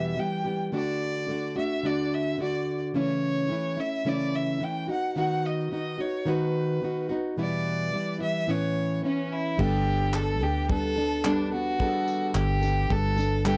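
This is an excerpt of sunny, heartfelt acoustic pop at 108 BPM in 4/4 with a light swing on the sixteenths. It opens with a fingerpicked nylon-string guitar, classical in tone with audible finger squeak, and a smooth, even, rich bowed violin carrying the melody with vibrato. The chords move from E minor through D, A/C# and B/D# before returning to E minor and Aadd9. At 9.6 seconds the arrangement fills out on a Gadd9 chord. A round, punchy, foam-muted electric bass sits up front, a polished grand piano plays in the background, and a cloth-damped, thuddy drum kit adds a tight kick, dark cymbals, handclaps and tambourine. The dry, close sound has little reverb and recalls a 1970s studio.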